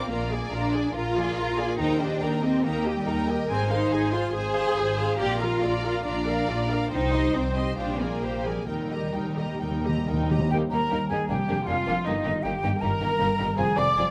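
Dramatic and stormy, this rubato classical excerpt in Eb major at 128-158 BPM sets lush, vibrato-rich bowed strings over background harp arpeggios, with a smooth, even violin section melody, a soft-attack second violin line, close viola accompaniment, expressive cellos and a clear, distant double bass, before round, soft-mallet timpani fill in at 8.7 seconds and a pure, up-front flute takes a second line from 10.5 seconds.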